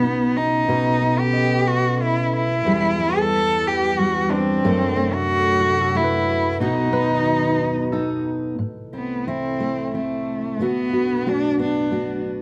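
From the first moment, a bowed solo cello sings the melody up front, its nasal, slightly boxy tone shaped by vibrato and portamento, over a fingerpicked steel-string acoustic guitar with a warm sound, fresh strings and the occasional finger squeak. Underneath, a dark analog pad holds sustained chords in the background, blending detuned square and sawtooth tones with a sub octave, a touch of ring modulation and a soft chorus shimmer. At 1.3 seconds a concert harp joins with ringing arpeggios, also set back in the mix, and it falls away at 10.1 seconds. This intimate, melancholic folk-pop ballad moves at an unhurried 91 BPM in 3/4, moving from B through Em and F#dim and back to B before turning to Amadd9 and D6 near the close. A moderate large-studio reverb and a dark, warm production give the whole passage a hushed, enveloping glow, and it ends as a fragment cut from a longer piece.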